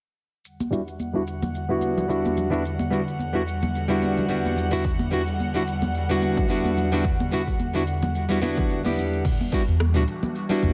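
A loose, swung sixteenth-note groove in 4/4 carries this relaxed, wistful sunset chillout piece, cut from a longer track and driven by a layered, overdriven deep house kit of crash cymbal, rim click, shaker and toms, with hard-handed congas sitting close and dry in the background. Up front, a small, bright fingerpicked nylon-string guitar plays accompaniment through a low-pass filter and delay, with a filter sweep running across its part through the opening section. An airy, breathy pad holds sustained Em9 chords, its detuned sawtooth and triangle tones, noise layer and chorus giving it a soft, warbling vintage haze. A deep, overdriven electronic kick joins at 4.8 seconds and briefly drops out just before the second section begins. A round, sustained sine sub bass with a fast attack arrives up front at 9.7 seconds, all set in a light digital reverb.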